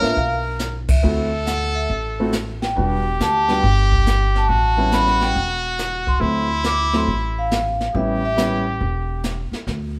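Sophisticated and relaxed, this short excerpt from a longer small-group swing and bop piece moves at 139 BPM in 4/4 with a swung eighth-note feel, centred in D mixolydian. A dark, ringing vibraphone played with medium mallets and motor off carries the melody until about 8.3 seconds, while a brilliant, punchy trumpet with light vibrato and scooped notes sounds a forceful second line up front until around 9.5 seconds. A grand piano with audible action noise gives intimate accompaniment, and a woody, thumpy upright bass on gut strings sits prominently beneath, running to the end with the brushed drum kit and its boomy kick, medium-tuned snare and ride cymbal. The band hits an accent at 0.8 seconds, and the harmony passes from a rootless G#dim7 through D9, Em7 and A9 chords. The group plays live together in a stone room whose moderate reverb lends the ensemble a natural, shared space.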